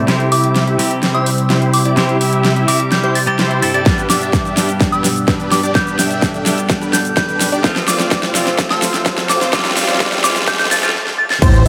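A soft, pure FM synth bell melody with phaser and tape echo sounds from the start of this euphoric, emotional festival progressive house build-up at 127 BPM over C, G and F chords, together with bright, twangy clean electric guitar and a lush background unison pad, both pumping with the sidechain, and a huge, detuned supersaw riff under a sweeping low-pass filter, while a big-room drum kit with a huge snare and metallic hats plays fills throughout. A punchy overdriven kick enters at 3.9 s, a very quiet riser and sub drop arrive at 7.0 s, and after a short break an impact at 11.4 s brings in a fat, saturated analog bass and a nasal unison lead arpeggio with vibrato, the whole build-up set in a huge ambient reverb and tuned to A4 = 437 Hz.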